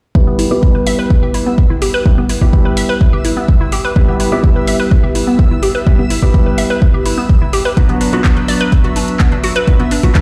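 An up-front, overdriven electronic kick anchors this expansive, dreamy progressive house excerpt, joined by intimate felt-muted upright piano stabs with audible action noise, a filter sweep, delay and sidechain pumping, crystalline wavetable pluck arpeggios shimmering through chorus and phaser, a deep house kit of handclaps and metallic hi-hats, and from 1.3 s a reversed, detuned granular texture swelling in the background, the mix played on a big sound system in a bare room with large studio reverb.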